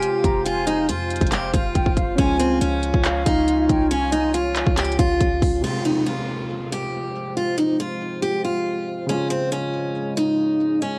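A dry cassette home recording, this eerie, melancholic fragment of half-time trap at 139 BPM in F minor sets a bright, up-front picked steel-string acoustic guitar melody over a dark, mellow grand piano and a deep, detuned ambient pad with chorus sitting in the background, while a breathy flute with vibrato and tape echo sings a high second line until 4.3 seconds, and a boomy sine 808 bass joins a hard-clipped kick, crisp hats and handclaps through the first half before they fall away by 5.6 seconds, when an electronic downlifter enters.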